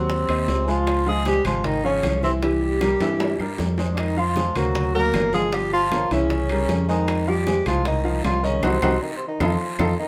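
Afro-Cuban jazz with a sultry, sophisticated mood, this excerpt from a longer piece moves at a brisk, straight four-beat pulse. A breathy, mellow tenor saxophone carries the melody up front with light vibrato, soft attacks and scooped notes, sounding distant and roomy, while a warm trombone sits lower in the background with its own vibrato and gentle attack. A clear, woody upright piano, slightly detuned and short in sustain, supplies the accompaniment through rich jazz harmony, and a dark, round fingered electric bass holds the low end directly and prominently. The percussion bed blends very quiet low-tuned congas with soft hands, close and dry bongos struck hard, ringing metal-shell timbales and distant woody claves in the background, plus a raspy guiro. Drum fills arrive at 3.0 seconds and again at 8.6 seconds, where the whole band also hits an accent, all within a moderate studio reverb.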